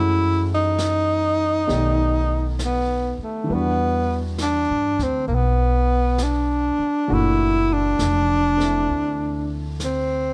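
A slow swung 4/4 at 67 BPM carries this tender, late-night jazz ballad fragment, where an up-front, warm tenor saxophone sings the melody with subtone and vibrato over a woody, thumpy pizzicato upright bass, a short-sustained grand piano in the background, and a brushed snare and hi-hat kit with a rolled-off, small-room sound that enters at 0.8 s, all in light reverb as the chords move from F#m7 through B7alt and Em7 to F#7alt.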